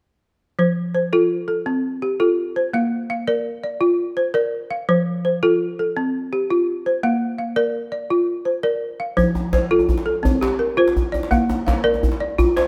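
A woody, round balafon opens at 0.6 seconds with hypnotic arpeggios in F major, sitting up front and spanning F3 to F5 as the harmony alternates between F and Bb in a straight 12/8 at 112 dotted-quarter beats per minute. At 9.2 seconds a medium-tuned djembe with metal rattles joins, sounding distant, and both play until the excerpt, cut from a longer piece of West African traditional music, ends at 12.7 seconds. Close, detailed microphones catch the balafon's dark tone within a moderate recital-hall reverb.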